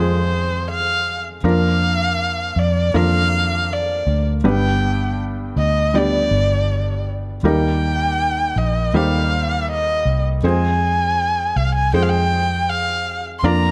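A bowed erhu carries the melody from the very first moment, up front and expressive with vibrato and portamento. Beneath it, a soft, mellow felt-muted upright piano with thin felt, short sustain and audible action noise plays an intimate accompaniment, while a dark, round, foam-muted electric bass sits up front. This longing, melancholic pop ballad moves at 80 BPM in a straight 4/4 and is tuned to A4 = 439 Hz. Its harmony passes from F minor through Bb over F, G and Eb before returning to F minor, and light reverb with a small room ambience surrounds this excerpt cut from a longer piece.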